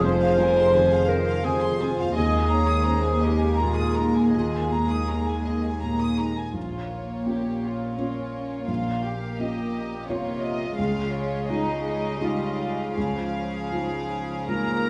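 A cinematic, emotional orchestral film score in a rubato 3/4, longing and bittersweet, where two floating, sul tasto violin sections carry the melody and a second line over dark, woody violas, a felt-muted upright piano with audible action noise, rich background cellos and soft double basses that drop out at 6.3 s, while a distant, mellow clarinet sounds through the opening bars and a warm, up-front oboe and a roomy French horn section enter only at 14.5 s, all set in a wet recital hall.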